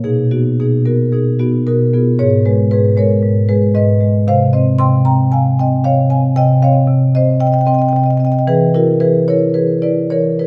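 Rubato in 4/4, this flowing, warm fragment of a contemporary classical piece for solo marimba features soft mallets sounding mellow and round from Ab2 up to C6, the instrument close-miked and up front yet framed by a recital hall's lingering reverb as the harmonies shift over its 10.5 seconds.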